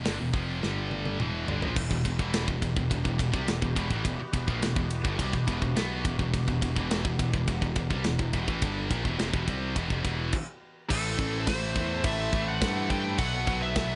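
A dry, tightly recorded excerpt with a dull top end opens this epic, heavy metal piece in E minor at 105 BPM, where two scooped high-gain guitars, one set back in the mix, drive the riff over a fuzzy, overdriven picked bass and an up-front studio drum kit with bright cymbals, a tight kick and a drum fill leading into the next section. From 1.8 seconds a nasal, evolving sawtooth pad with chorus sustains chords in the background, and after a stop from 10.3 to 10.9 seconds a warm, distorted lead guitar with tape echo takes the melody over a shift to A minor.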